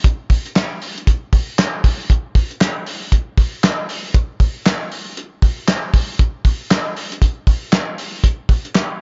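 A cloth-damped, thuddy acoustic drum kit sits up front in this strutting, playful funk excerpt, its tight kick, medium-tuned snare, hi-hat and handclaps carrying a swung sixteenth-note feel with a gritty, saturated edge and a rolled-off top in a small, dry room, moving from a brief opening section into a new one at 2.1 seconds.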